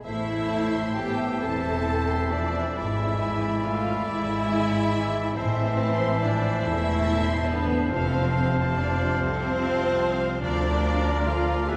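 A slow, elegiac romantic orchestral passage in A minor and 6/8, moving with rubato at around 43-49 BPM, opens with a lush, expressive violin section carrying the melody over rich, distant cellos and smooth double basses, while a clear oboe, a bright clarinet and an even background violin line add second lines and a very quiet, mellow bassoon accompanies. From 0.1 s a dark viola section with portamento, an airy, hollow flute and a soft-attacked French horn section holding sustained chords join the texture. The harmony moves from Am through E7/G# and F to a closing Bb/D, and a long cathedral reverb gives this melancholic 11.8-second extract a spacious, church-like glow.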